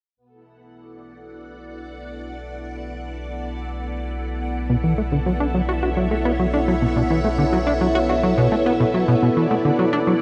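A lush vintage string machine, treated with phaser and ensemble chorus, holds sustained B minor chords up front in this hypnotic, expansive ambient excerpt at 106 BPM, fading in together with a deep, round sine sub bass and a bright, pulsing gated texture set in the background. At 4.7 seconds a punchy, funky analog bass riff arrives with a fast filter pluck, ring-modulated bite and tape echo, and at 9.2 seconds a dark, clean fingered electric guitar adds arpeggios that are barely audible. The whole is bathed in an enormous reverb that lets each sound hang for seconds.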